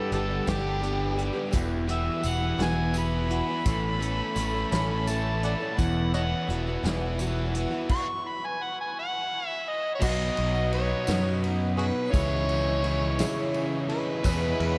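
Hopeful and warm, this folk rock and heartland rock excerpt in 6/8 is led by an up-front, gritty, amplified harmonica solo with tongue slaps, light vibrato and tape echo, which runs until 10.0 s and includes a stop from 7.9 s. Beneath it sit a picked plugged-in steel-string acoustic guitar with subtle chorus and finger squeak, a biting, double-tracked overdriven guitar riff, a warm, up-front picked electric bass, and a very quiet tonewheel organ holding clear sustained chords through a slow rotary speaker. An unplugged drum kit with dark cymbals and a tight kick, played with bundle sticks, and a jingly tambourine in the background complete a dreamy mix soaked in huge ambient reverb.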